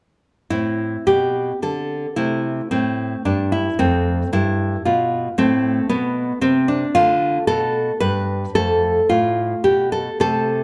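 This is a classical, baroque-style dance in triple metre, played with a rubato feel and a grave, solemn mood. A single fingerpicked nylon-string guitar carries the whole piece, entering at 0.5 seconds and sounding full-bodied and deep, with the occasional finger squeak audible on the strings. Its range reaches from F2 up to B4, spanning low bass notes up into the middle register. The harmony moves from A minor through F, an A minor chord with an added ninth, and D minor, closing on an F with an added ninth near 8.6 seconds. The guitar sits up front in a moderate recital hall reverb, and the passage is cut from a longer piece, ending at 10.6 seconds.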